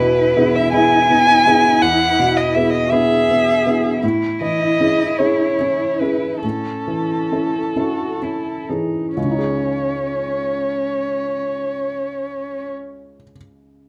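Under light reverb, this melancholic neoclassical fragment in C# minor drifts in a rubato 6/8 at 41-56 BPM, with a dark, woody violin bowing the longing melody up front with vibrato, a rich cello adding an expressive second line with portamento, and a soft, intimate felt-muted upright piano with audible action noise accompanying, as the pulse slows from 2.9 to 9.2 seconds and the piano sounds alone once the strings stop at 12.7 seconds.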